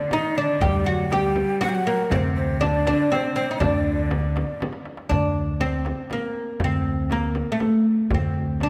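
Melancholic and soulful, this excerpt of an Arabic maqam ensemble in D hijaz moves at 120 BPM in 3/4. A bright, woody, plectrum-plucked fretless oud carries the melody up front, while a breathy, close-miked, unsteady ney with vibrato and a dark, reedy bowed cello trace second lines that stop at 4.6 seconds. Pizzicato upright bass holds D beneath from 0.6 seconds, and a soft-handed clay darbuka and a hard-handed frame drum sit in the background. A drum fill leads into a new section at 5.1 seconds, all within a moderate concert-hall reverb.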